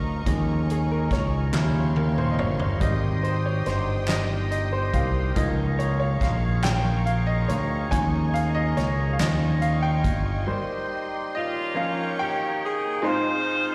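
A slow, reverent 6/8 gospel feel opens this short excerpt, with a bright, woody upright piano taking the solo over a slapback echo, its action noise audible up front, while a percussive tonewheel organ with key click and a slow rotary speaker and a lush, bowed studio string section hold sustained chords. A punchy fingered electric bass and a natural country drum kit with a fat snare carry the groove, joined by crisp, compressed group handclaps in the background from 1.5 seconds. After the bass and drums drop out for a break around 10.5 seconds, a vibrato-rich saxophone section enters at 11.3 seconds with an uplifting jazz-style melody, all heard through a live venue's PA with recital hall reverb.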